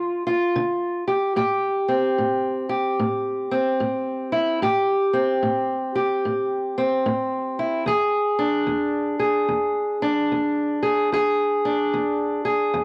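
Blues in A minor at a slow, swung 74 BPM, this soulful, mournful 12.8-second fragment of a longer piece features a solo fingerpicked steel-string parlour guitar, placed up front, with a dark, woody, boxy tone from old strings. The harmony moves from Dm to Am7 at 1.4 seconds and on to E7 at 7.9 seconds. Light reverb and small-room ambience surround the guitar in this home cassette recording.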